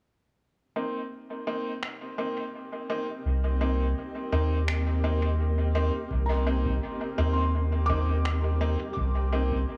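Ambient dub in C minor at 84 BPM, this meditative, deep passage, cut from a longer piece, moves in 4/4 with a light swing on the sixteenths and rests on a Cm7 chord. A bright, woody upright piano with a slightly detuned, worn character plays stabs up front from 0.8 seconds, run through a low-pass filter and dub echo, while a cloudy, evolving granular pad fades in beneath it, holding blurred, mellow sustained chords in its own reverb. Muffled, tape-warm electronic finger snaps enter at 1.8 seconds, filtered and sent into dub echo, and a round, soft sub bass with tube saturation arrives at 3.3 seconds as the most forward element. At 6.1 seconds the second section opens with a deep analog kick drum sitting in the background, soon joined by a felt-muted upright piano playing high, intimate arpeggios with audible action noise and tape echo. The whole sits in a light, small-room ambience that keeps the sound close and hushed.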